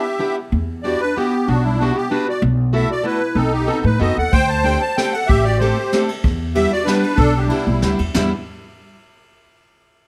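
A light reverb surrounds this bittersweet, whirling musette waltz in E minor, where a reedy, shimmering musette accordion sits close and up front with the melody, shadowed by a clarinet's classical-style second line carrying a slapback echo. A picked parlour steel-string acoustic guitar, plugged in, supplies accompaniment, while a woody pizzicato upright bass enters at 0.5 seconds. The rubato 3/4 pulse moves at 189 BPM before a distant, roomy brush kit with dark cymbals and a boomy kick joins at 4.3 seconds in this short cut from a longer piece.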